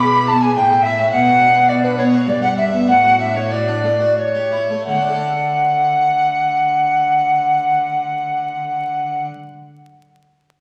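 Radiant and serene, this short passage from a longer baroque-style sonata movement in triple time moves with a straight, graceful pulse that gradually slows between 0.3 and 4.9 seconds before a second phrase begins. A mellow, hollow silver concert flute sits up front and carries the second line with pure, tongued notes and vibrato, standing out as the most prominent voice. Alongside it, a rich, focused violin plays the melody in the same register with bowed vibrato, set quieter in the mix. A full-sounding harpsichord with two sets of strings supplies plucked, French-style accompaniment across a broad range, while a clear, bowed cello anchors the bass. The players sit in a spacious recital hall with a lingering reverb and a vinyl crackle, and the harmony moves through chords such as Bm, Em7/G and A7 before settling on D at 4.9 seconds.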